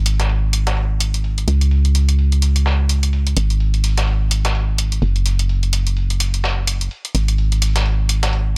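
A swung sixteenth-note groove in 4/4 drives this bittersweet, energetic piano house passage, cut from a longer piece. An up-front, hollow, organ-like FM bass with a fast, percussive attack and dark decay carries the low end. Above it, a compressed, sampler-style breakbeat kit with a medium-tuned snare, re-recorded in a large room and filtered on its hats, snare and room sound, sits beneath a tape-warm analog electronic hi-hat re-recorded in a small room, all in a dry, gritty hardware recording with transformer saturation.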